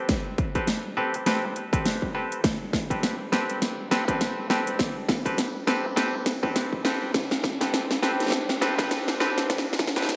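The recording has a bright, 1980s-style digital sheen, high-pass filtered and set in a wet plate reverb with a 2.3-second decay. This glitch hop passage, cut from a longer piece, moves at 102 BPM in 4/4 with a 58% swing on the 16ths. It sits in A minor over an Am9 chord, tuned to A4 = 436 Hz, and the mood is swaggering and playful. From the very start, a clean, stringy clav plays percussive stabs between C4 and B4, placed up front through a combo amp and shaped by sidechain pumping, a low-pass filter and delay. From 0.1 seconds, a layered dubstep drum kit brings a huge snare under gated reverb and metallic hi-hats, while a distorted electronic kick sits a little lower in the mix. The whole span, running to 10.2 seconds, is a build-up carried by a continuous drum fill.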